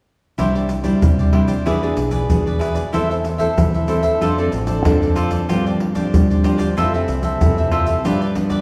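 Bathed in a wet recital-hall reverb, this sunny, lively samba-and-choro fragment sets a crisp, picked cavaquinho and a fingerpicked classical nylon-string guitar over a warm, punchy fingered electric bass with an envelope filter, while an up-front tube shaker, tight surdo and pandeiro drive a chord path that moves from Cadd9 through E7, Am/E, Dm7, G7sus4 and Fmaj7 to G7.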